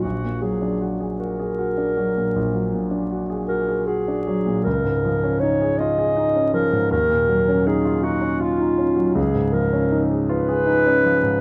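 Wistful and mysterious, this impressionist classical duo drifts in a rubato 12/8 at about 53 dotted-quarter beats per minute, with a dark, roomy clarinet singing the melody between F4 and Eb5 over a clear concert grand piano whose deep bass supports chords moving from Bbaug7 through Db69 and Ebm9 to Db9, all set in a moderate recital hall reverb with close, detailed miking and vinyl crackle, in a brief 11.4-second passage cut from a longer piece.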